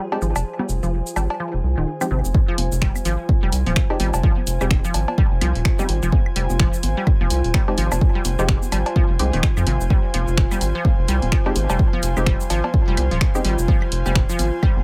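Swung sixteenths drive this sparse, clinical minimal techno excerpt, where a tape-warm analog drum machine of cabasa, finger snaps and hi-hat, overdriven cowbell, woodblock and congas in the background, a rubbery, hollow square bass up front, squelchy resonant blip plucks with tape echo, muted dub chord stabs through digital delay and a breathy pad play together, the bass, plucks and pad riding the sidechain pump, while a swarming, very quiet drone ends at 2.4 s just after the punchy kick drops in at 2.3 s.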